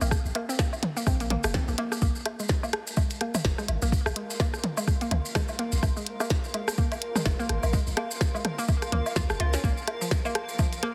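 Cool and clinical, this swung minimal techno cut at 126 BPM opens on a hollow, bouncy square-wave pluck riff treated with chorus, phaser, cassette tape, delay and sidechain pumping, over a deep, punchy sine sub bass, an up-front soft electronic kick, a clicky minimal kit of tiny snare and hats, and a layered garage kit of rim click, toms and woodblock thrown into dub echo. Distant, grainy maracas sit far back in a large room, and from 2.9 seconds a cloudy, detuned granular pad drifts in high above with its own reverb and pumping. The whole mix carries a heavily compressed, radio-like sheen in light digital ambience.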